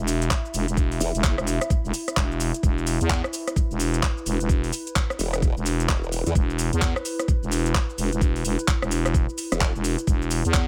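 A thick, growling FM bass with overdrive and sidechain pumping drives this aggressive, swaggering bass house excerpt at 129 BPM with a swung 16th feel, alongside a knocking, up-front electronic kick, a tape-warm garage kit of handclaps, metallic hi-hats, rim click and shaker, a dark, warbling lo-fi pad with chorus and its own reverb in the background, and short bursts of a detuned, saturated formant-sweep wobble bass at 1.0, 5.2 and 9.5 seconds, in a dry mix carrying a faint mains hum.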